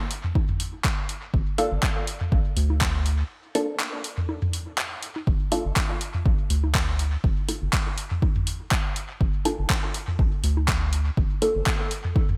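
A lightly swung 4/4 pulse at 122 BPM drives this hypnotic, meditative dub techno excerpt in G minor, built on a punchy, up-front electronic kick, a layered deep house kit of handclaps and hi-hat treated with gated reverb and dub echo, and dry, tape-warm electronic toms and congas that pump against the sidechain, while from 1.3 seconds a round, dark, slightly nasal analog bass moves between G1 and D2 and from 1.6 seconds a muted, detuned sawtooth chord stab sounds a rootless Gm through phaser and dub echo, with a break between 3.3 and 5.3 seconds, all set in a light digital ambience with bright 1980s-style sheen.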